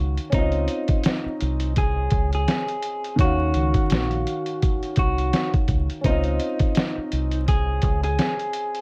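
A muffled, thumpy sampler-style drum kit with 12-bit grit sits up front in this melancholic, hazy lo-fi hip hop excerpt at 84 BPM with a swung sixteenth-note feel, its compressed, pitched-down sound covering kick, snare and hi-hat, while a round, punchy dub bass plays alongside it until 8.2 seconds. A woody upright piano with long sustain and a slightly broken-up electric guitar melody from 0.3 seconds are both softened by low-pass filtering and plate reverb as the harmony moves through Dbmaj9 and Ebm9. Vinyl crackle and light reverb give the whole piece a dusty, faded sheen.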